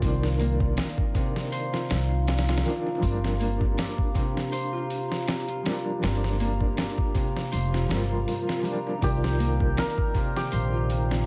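Trip hop at 80 BPM in C minor with a melancholic, cinematic mood, this echo-heavy excerpt pairs a gritty, compressed sampler-style drum kit with a thumpy kick and a woody pizzicato upright bass up front, beneath a felt-muted upright piano with audible action noise, tremolo and tape echo, a warbling, detuned tape-like pad with chorus, and bright fingerpicked Celtic harp arpeggios through analog delay, while a shimmering hammered santur melody enters at 9.0 seconds as the chords move from Cm11 to Gm7 and back.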